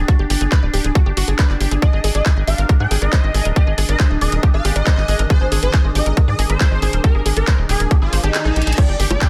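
Psychedelic and hypnotic, this psychedelic trance excerpt at 138 BPM drives on an overdriven, up-front electronic kick and a tight, punchy sawtooth sequencer bass, with a layered kit of bright hi-hats, bongos, handclaps and crash cymbal. A lush, warbling detuned unison pluck riff with delay and sidechain pumping rides over a resonant, overtone-sweeping drone and a very quiet, cloudy granular pad, while a swarming, aggressive rave lead with a pitch-rise attack and phaser enters at 1.8 s as the chords move from G5 to Ab5. Faint zaps spark around 4.6 s, and near the end a reverse cymbal rises, the kick drops out at 8.3 s for a drum fill, and an impact lands back on G5 in a dense, heavily limited modern master.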